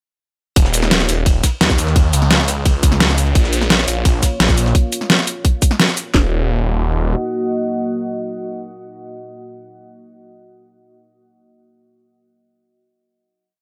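This dark, aggressive technical drum and bass piece opens at 0.6 s straight into the drop. A thick, swirling saw bass with a phaser, saturation and sidechain pumping plays chopped phrases, over a tight kick and cracking snare in a broken-beat pattern, an overdriven electronic kit with bright hats and a shaker, and a very quiet, gritty, pitched-up looped breakbeat with a ride. A deep, warbling vintage pad with chorus, its own reverb and sidechain pumping joins at 3.8 s. It carries the closing Ebm chord from 6.1 s as the drums fall away, with the bass lingering beneath it until 7.2 s, in an otherwise dry, up-front mix.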